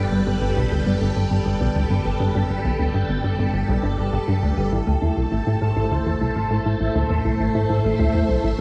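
Expansive and mysterious, this sequencer-driven ambient space music sits in a wet, echo-heavy chamber, cut from a longer piece as it moves from Gadd9 to Am at 4.7 seconds. A swirling, phased string machine holds bright chords up front beside a punchy, funky analog bass riff with tape echo, while a round, tine-like thumb-piano-like pluck traces gentle arpeggios in the background. Beneath them an evolving analog drone hums, and a very quiet, breathy wind-like tuned noise texture drifts above.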